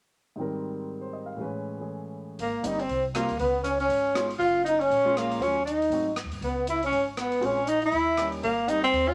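Playful and swinging, this fragment of small-group jazz moves at a brisk 238 BPM in Ab major, opening with a warm concert grand piano alone before the rest of the band joins at 2.4 seconds. A veiled, cup-muted trombone carries the melody while an up-front, breathy tenor saxophone with vibrato and scooped notes plays a second line, over woody pizzicato upright bass and an airy, polished drum kit on hi-hat and rim click. Rich chords such as Abmaj9, Db7 and Eb7b9 pass beneath a moderate studio reverb.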